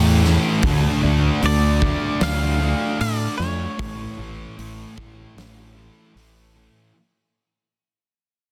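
A straight 4/4 pulse at 76 BPM drives this hazy, wistful shoegaze and dream pop rock fragment in A major, cut from a longer piece and fading out across its 6.9 seconds as the harmony moves from A to D minor and back to A. A thick, dark, double-tracked fuzz guitar riff and a growling, overdriven fingered bass sit up front, while a huge arena drum kit with a fat snare and punchy kick enters at 0.2 seconds. A bright, twangy, clean electric guitar melody recorded direct and treated with analog delay floats higher in the dense, heavily limited modern mix, softened by light studio reverb.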